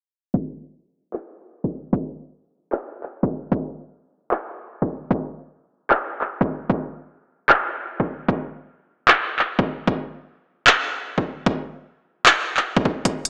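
A half-time groove at 151 BPM in 4/4 drives this future bass excerpt, with a 56% swing on the sixteenths. An electronic kick drum enters at 0.3 seconds: it is punchy, layered and overdriven, re-recorded in a large room, and sits up front in the mix. At 1.1 seconds a trap drum kit joins with handclaps and crisp hi-hats, also placed up front, and it carries on until 13.3 seconds. A lush hall reverb surrounds the sound, while a low-pass filter gives the whole a small-speaker character, and a filter sweep runs through the single section from 0.3 to 13.1 seconds. The mood is euphoric, and the passage is cut from a longer piece.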